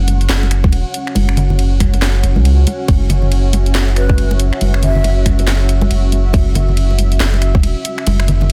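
A swung, half-time groove drives this meditative, dark deep dubstep fragment: a tight, layered electronic kick arrives at 0.6 s beneath a garage kit of cracking snare, hi-hat, ride, finger snaps and handclaps, while dry, hard-handed congas with dub echo sit in the background. A thick, saturated sub bass sits up front, and a moody, detuned analog pad with chorus holds slow-blooming, evolving chords. Between 4.0 and 5.3 s a breathy, bamboo-toned shakuhachi with vibrato and dub echo drifts in from afar, all in a dry, dense, heavily limited modern mix.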